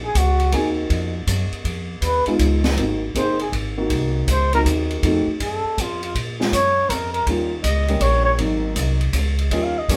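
A breathy, whispered trumpet and a woody, thumpy upright bass open this playful, relaxed small-group swing and bop jazz excerpt at 160 BPM in a lilting 3/4, with the drums joining at 0.2 seconds and the dark, mellow concert grand piano at 0.5 seconds. The trumpet takes a solo up front, its soft attack, scooped notes and light vibrato giving it an intimate, vintage quality as it moves between F4 and F5. Beneath it, the pizzicato bass on gut strings anchors the low end, while the piano comps smoothly with short sustain through a progression in Ab mixolydian that starts on a rootless Ab9 and passes through Db9, F7b9, Bbm and Eb9. The open kit adds dark cymbals on ride and hi-hat, a high-tuned snare and a boomy kick, sitting a little further back in the mix. The band sounds like it is playing live together in a small room with moderate reverb, and the passage is cut from a longer piece.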